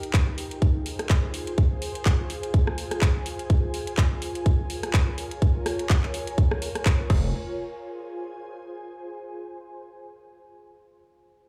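A swung 125 BPM groove in 4/4 drives this bouncy, gritty bass house fragment in F minor, with a tight, up-front electronic kick and a layered garage kit of handclaps, hi-hat, rim click and crash cymbal, both in a small room reverb. Over them an ethereal, airy pad with detuned sawtooth unison, slow attack and ensemble chorus pumps against the kick through the Fm and Bbm7/F chords. At 7.1 s an aggressive, metallic wobble bass sounds a sustained, saturated low F. After the drums stop at 7.2 s and the bass at 7.3 s, the mellow pad carries on alone until 9.2 s, all heard through a big sound system in a bare room with large studio reverb.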